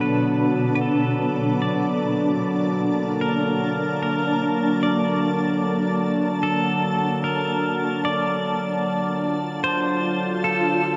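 A slow, straight 4/4 pulse at 75 BPM underlies this peaceful ambient piece, tuned to A4 = 439 Hz. An ethereal, detuned pad sustains chords from Bm7 through Bbmaj7#5/D to D7#9 at 8.0 s, while a warbling, vintage analog drone with chorus hums alongside it. A clean electric pedal steel guitar, played with fingerpicks and slide, fades in across the full 11.0 seconds, its melody bathed in shimmer reverb and diffuse delay, and a huge, wet reverb and dark, warm production wrap the three parts in a hazy glow.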